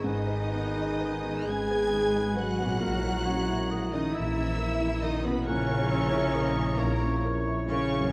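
A lush violin section carries the melody high in its range, its vibrato expressive and its attack soft, set back at a slight distance in this bittersweet, moving cinematic passage. It unfolds in a slow, rubato 6/8 at around 40-46 BPM, cut from a longer piece and lasting about 8.1 seconds. A second violin section, along with a pure, straight-toned flute, a classical-style oboe and a dark, roomy clarinet, weaves second lines beneath the melody. A felt-muted upright piano with audible action noise and a smooth viola section provide soft accompaniment, while a tight French horn section holds sustained chords and a very quiet, thumb-plucked harp rings out arpeggios. A rich, focused cello section and an up-front double bass section anchor the low end as the harmony moves from G#m to A#dim at 2.8 seconds. The production is dark and warm, bathed in moderate scoring-stage reverb.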